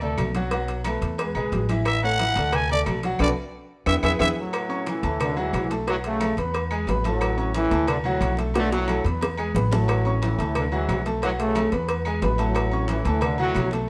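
A fast, straight 4/4 salsa groove at 180 BPM in A major drives this joyful, festive passage, anchored by a thumpy, woody pizzicato upright bass up front and a clear, smooth concert grand piano with deep bass moving through chords such as D, B5, E, A and Bm7. In the percussion, damped, hard-handed congas and claves sit in the background, low-tuned bongos and cowbell sound round, close and dry, and vintage agogo bells and timbales add a ringing metal edge. A raspy, growling trumpet with light vibrato plays the opening solo until 4.3 seconds, capped by a band accent and a drum fill. At 4.4 seconds a tight, brilliant trombone section takes over the melody, and another drum fill arrives at 8.5 seconds. The band plays live together in a stone room with moderate reverb.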